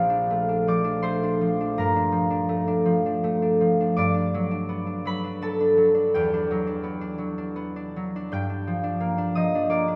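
Classical solo concert harp, peaceful and dreamy, drifts in a rubato 3/4 at 83 BPM with a slightly sharp tuning of A4 = 441 Hz, the up-front, fingerpicked acoustic harp ringing warmly from Bb1 to G6 through Bbmaj7, Gm9, Gmaj7, Em9 and Gm7 chords inside a wet cathedral reverb that lingers for 4.8 seconds, in a 10-second excerpt cut from a longer piece.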